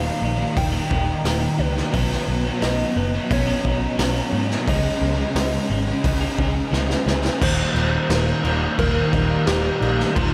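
A raw garage drum kit sits up front, gritty and saturated with a punchy kick, a medium-tuned snare and a rolled-off top, coming in at 0.6 seconds with crash cymbal and hi-hat and playing a fill from 6.7 to 7.4 seconds. This hazy, blissful shoegaze and dream pop excerpt moves at 88 BPM in a straight 4/4 in Eb mixolydian, drifting through Ebadd9, Badd9 and Dbsus2 before settling on Eb as a new section begins at 7.4 seconds. Beneath it, a vintage muted picked bass gives a dark, round, foam-muted foundation, while a soft struck FM synth lead carries the melody with a gentle, keys-like, warbling tone shaped by chorus, tremolo and analog delay. A thick wall of guitars fills the background: a scooped, compressed clean guitar riff with reverse reverb, a fuzz guitar riff treated with distortion and analog chorus, a very quiet double-tracked overdriven guitar riff, and lo-fi, slightly broken-up arpeggios from a guitar through a small old amp. 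The whole mix is soaked in a huge, dreamy ambient reverb that lets the parts blur together into a shimmering haze.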